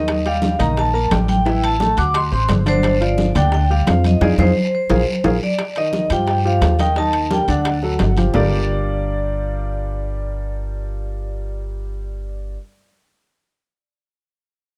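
A ringing vibraphone with medium motor vibrato and plate reverb carries the melody of this sultry, sophisticated Afro-Cuban jazz cut in G minor at 174 BPM, over a woody upright piano, a thumpy gut-string upright bass up front, and a percussion section of thick-skinned congas, saturated bongos, metal-shell timbales and raspy guiro that plays until 8.4 seconds, with a band accent and drum fill closing the opening section at 5.6 seconds in a dark production.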